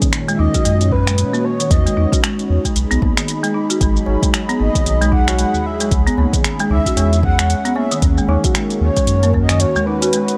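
Earthy and warm, this swung organic downtempo cut pairs woody, rustic marimba arpeggios with a smooth, detuned analog pad that pumps under a deep, overdriven electronic kick, while an afro-pop kit of finger snaps, metallic hi-hat and shaker sets the groove, a round sine sub bass holds the low end, a soft, breathy flute-like synth lead with vibrato carries the melody over chords moving from D#m7 through Emaj7, G#m7 and C#m7, and a high-tuned, short-ringing tabla enters quietly in the background at 4.1 seconds.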